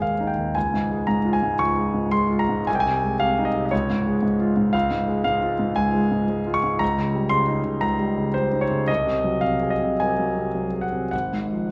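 Warm and lyrical, this short cut from a longer romantic character piece for solo piano moves with a flexible rubato feel between 98 and 120 BPM, settling into Db major from 4.7 s as a clear, intimate concert grand sits up front with deep bass, long sustain, audible action noise and a polished presence, spanning Ab1 to Db6 through chords such as Ab/C, Eb7/Db and Ab7/C before closing on Fm/Ab, all bathed in a wet recital hall reverb.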